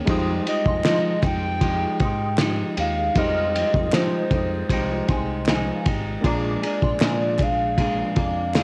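Wistful and mellow, this short indie pop and bedroom pop fragment, cut from a longer piece, moves at a relaxed 78 BPM in F minor, resting on Fm9 before shifting to Bb7 at 6.2 seconds, all with the light reverb and cassette haze of a home recording. A muffled, cloth-damped drum kit with a fat snare, dark ride cymbal and sampler grit sits up front over a round picked bass, while a clean, fingered semi-hollow guitar with subtle chorus and vibrato and a reedy, worn, slightly out-of-tune electric piano, very quiet through its built-in speakers, fill out the accompaniment. A warbling FM chime with phaser and tape echo rings in the background from 0.1 seconds, a hollow, woody clarinet-like synth lead carries the melody from 0.5 seconds, and crisp group handclaps join close and dry at 0.8 seconds.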